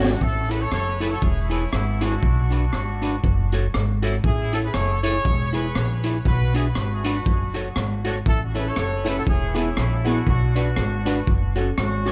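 A swung, bouncy ska groove at a moderate lope drives this upbeat excerpt, with a crunchy, saturated breakbeat kit snapping a high-tuned snare and punchy kick under a woody, thumpy pizzicato upright bass, while a clean hollow-body archtop guitar picks the accompaniment, a distant, roomy horn section carries the melody with light vibrato and dub echo, and a boxy upright piano adds a brief stab at the very start before returning with stabs from 8.5 seconds, all over a looping A, E, Bm, F#m progression in a dark production.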